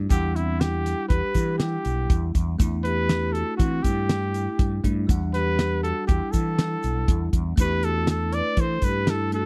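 Brooding yet driving, this short excerpt of progressive instrumental band music moves in an uneven 5/4 metre with a straight feel. A breathy, punchy trumpet carries the melody up front in a jazz style, its tone colored by vibrato. Beneath it, a vibraphone played with soft mallets and the motor off adds a mellow, ringing second line from the background. A round, dark fretless electric bass sits up front beside a damped 1970s drum kit with a fat snare, tight kick and hi-hat, its top end rolled off, while a bell-like tine electric piano supplies clean, bright accompaniment and a grainy, vintage egg shaker adds faint, band-limited texture. The harmony circles Em7 and Em11 before reaching A9sus4 at 7.6 seconds, and the recording has a dry, close 1970s-style studio sound.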